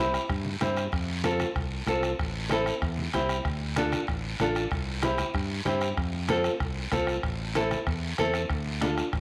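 Set in a small room with a moderate echo-chamber reverb, this fiery, danceable cumbia fragment in D minor runs at 190 BPM, with an up-front, fingerpicked nylon-string guitar cycling through C, F, Am and Dm over a bright, direct fingered electric bass, a soft-beater bombo, a raspy, distant guiro and very quiet, low-tuned congas with a thick-skinned, vintage tone that join at 0.3 seconds.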